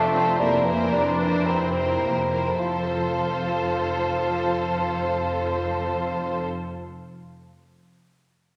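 A quick classical-period movement for symphony orchestra, this short fragment from a longer piece has a lively, spirited mood and a flexible, rubato feel. The violins carry the melody on a high, focused line with distant vibrato, while a second violin part sings beneath with a smooth top and lush ensemble sound. Violas fill in the accompaniment with an even, close tone, joined by a solo bassoon whose mellow, lightly vibrating voice sits up front yet sounds roomy. Cellos bring an intense bowed bass, doubled far below by the double basses. The opening slows down before the harmony moves from a C7 over F to a settled F chord at 2.6 seconds, all wrapped in the generous reverb of a concert hall.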